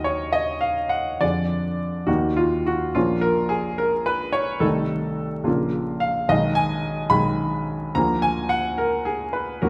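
In a rubato 6/8 feel at 71 dotted-quarter beats per minute, this stormy, passionate romantic character piece for solo piano is a brief fragment, about 9.7 seconds, cut from a longer work. A bright, brilliant baby grand sits up front with natural tone and short sustain, ranging from Bb1 to Cb6 through a shadowed harmonic path from Ebm through Bbm and Abm/Cb to a closing Bb7/D. The piano sits in a wet recital-hall reverb within a dark production touched by vinyl crackle.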